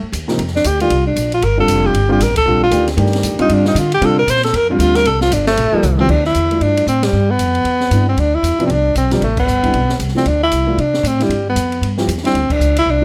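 Intense and spiritual, this fast modal jazz excerpt swings at 231 BPM in C dorian, shifting up to D dorian at 6.1 seconds, as an up-front, breathy tenor saxophone solos with vibrato and scooped notes over woody pizzicato upright bass, a dark, mellow baby grand piano, and an open acoustic drum kit with dark cymbals, a high-tuned snare and a boomy kick, whose fill at 5.8 seconds leads into band accents under light reverb.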